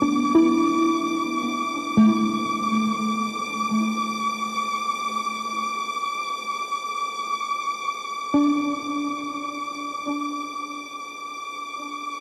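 A soft, round, detuned pluck and a bowed symphonic violin section begin this serene, luminous ambient excerpt together in free time. The pluck plays dark arpeggios over a Bm7 chord with lush chorus, cassette-tape character, diffuse delay and shimmer reverb, while the violins, with vibrato, hold a high, smooth texture bathed in their own shimmer. Both parts sit up front in a vast cathedral-like space until the pluck stops at 10.8 seconds and the strings carry on alone to 12.2 seconds.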